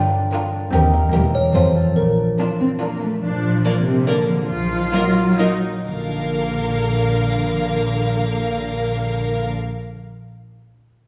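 Moving in a straight 3/4 at 124-150 BPM and slowing down from 2.6 to 5.9 seconds, this playful, whimsical film cue in Bb major opens with a delicate, tinkling music box, bright, up front and slightly out of tune, carrying the melody until 3.0 seconds alongside a rich, focused chamber violin section on the melody, an intense, clear violin section on a second line, a smooth viola section in accompaniment, and a ringing concert harp playing arpeggios in the background. At 0.7 seconds a dark, woody cello section and a smooth, even double bass section enter together on the bass, both bowed with vibrato, the cellos lending a lush, distant depth beneath the quirky surface. The short cut is heard from further back in the room through a wet scoring stage reverb, with chords moving from Gm7 through Edim7 and F to Bb, then Bb7 and Ebm/Bb before settling on Bb.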